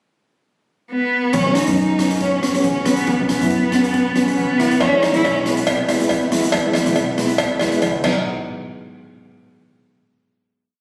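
A lightly swung calypso groove at 139 BPM in 4/4 drives this short, festive and carefree piece in B major, with a street-band drum kit of boomy kick, dark crash cymbal, hi-hat and rim click entering at 1.3 seconds alongside a woody, thumpy pizzicato upright bass playing a syncopated figure. Up front, a bowed cello carries a rich, expressive song-like melody with vibrato, portamento and a slapback echo, while a mellow, shimmering steel pan played with soft rubber sticks adds triad chords and a metallic cowbell joins at 4.8 seconds. The harmony moves from Bsus2 to E and back to B before a final hit closes the piece, heard through moderate studio reverb and compression with the sound of a phone recording in the room.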